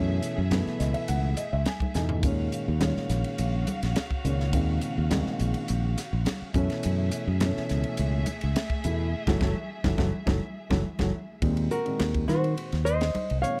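Electric jazz fusion with a funky, intense mood, moving at 104 BPM in a straight 4/4 and taken from a longer piece. A dark, mellow concert grand piano with a deep, boxy low end carries the accompaniment and opens with a fill, while lush, woody strings hold distant, bowed chords with vibrato through Gbm9 and Ebm9 harmonies. Up front, a warm fingered electric bass anchors the groove. A crisp, polished drum kit with a high-tuned snare, tight kick and dark cymbals plays a short fill before settling in, and ringing congas sit in the background. After a full-band accent that ends as the strings fall away at 11.4 seconds, a full-bodied, thumb-plucked nylon-string guitar takes the melody at 11.7 seconds. A clean, picked hollow-body jazz guitar enters at the same moment on a second line over Ebm6. The sound is dry and close, like a 1970s studio session in a small room.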